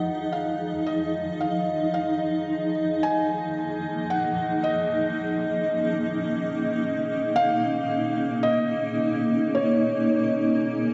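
Bathed in a cathedral reverb with a cassette-tape grain, this serene, spacious ambient excerpt at 55 BPM, tuned to A4 = 443 Hz, sets a cloudy, bright granular pad holding sustained chords up front, moving from Fm7 to Eb5 at 3.0 seconds, while a felt-muted upright piano, mellow and intimate with audible action noise and a diffuse ambient delay, fades in across the full 10.9 seconds carrying a high, soft melody.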